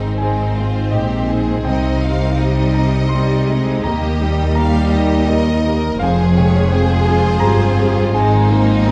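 A cinematic, emotional film score excerpt in a hopeful, moving mood, unfolding in a rubato 3/4 as a rich, vibrato-laden violin section carries the melody over a second, more distant violin line, a dark, mellow concert grand piano, focused violas, mellow sustained French horn chords in the background, a very quiet ringing harp playing arpeggios, and a deep foundation of clear bowed cellos and lush double basses, all set in a moderate recital-hall reverb with a dark production.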